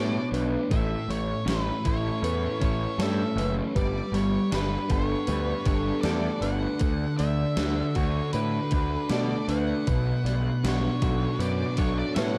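Bathed in light reverb, this blissful, wistful shoegaze and dream pop rock excerpt moves at 78 BPM in A mixolydian over Bmadd9, A, Gadd9 and D, with a growly, overdriven fuzz bass up front, a dark octave-fuzz lead guitar carrying the melody with slapback echo, a thick fuzz guitar riff under lush chorus, a compressed clean electric guitar riff recorded direct with reverse reverb, a boxy, shimmering fingerpicked twelve-string acoustic with analog chorus and finger squeak, and a thumpy, tape-toned 80s digital drum machine with gated reverb on the snare entering at 0.3 s.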